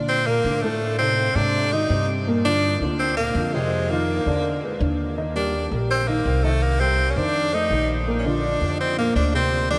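Afro-Cuban jazz at 165 BPM in Bb major, sunny and danceable, heard as a short cut from a longer piece and soaked in a huge, dreamy ambient reverb. An edgy, punchy tenor saxophone takes the solo melody up front from 0.1 seconds, close-miked and forceful with jazz vibrato and a touch of delay. Beneath it, a dark, intimate baby grand piano with audible action noise and a lush chorus supplies the chords, while a woody, thumpy pizzicato upright bass on steel strings anchors the low end.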